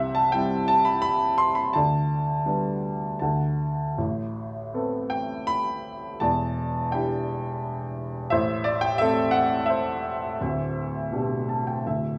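Classical solo piano in G major, lyrical and relaxed, moving in a rubato 3/4 at roughly 77-87 BPM through this brief 12.2-second fragment of a longer piece. A baby grand with a worn, present tone and long sustain sits up front, spanning from deep bass to high treble as the harmony passes from C through G/D, D, Amadd9, Em7 and Am before returning to G/D. Moderate studio reverb and a small room ambience surround the instrument, and a short piano fill closes the passage at 11.1 seconds.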